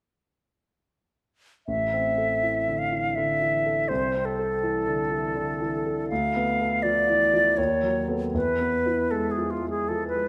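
In a rubato 3/4 at 81 BPM with uneven beats, this elegiac romantic classical duo in A minor moves from Am through Am/C and Bm7b5/D to B7/D# before settling on E, in a fragment cut from a longer piece. From 1.7 s, an airy silver concert flute carries the melancholic melody with a soft attack and vibrato, while a concert grand piano accompanies with a smooth, intimate tone, deep bass and audible action noise, both sitting up front. A moderate recital hall reverb surrounds the pair.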